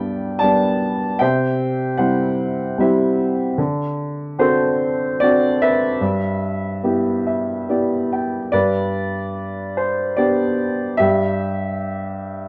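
A lone upright piano opens the recording, its woody, open tone sitting up front with long sustain ringing through a light reverb. This is lyrical classical solo piano in triple metre, played with a free, rubato feel that gives it a tender, calm mood. The harmony moves gently from G through C and a D7 before settling on a G6, and a short piano fill from 6.8 to 8.5 seconds leads into a second phrase that returns to G and closes on a rootless C over G. The instrument is tuned to 436 Hz and spans from low in the bass to the upper treble. The production is dark and mellow, with the top end rolled off, and the piece feels like a brief extract cut from a longer work.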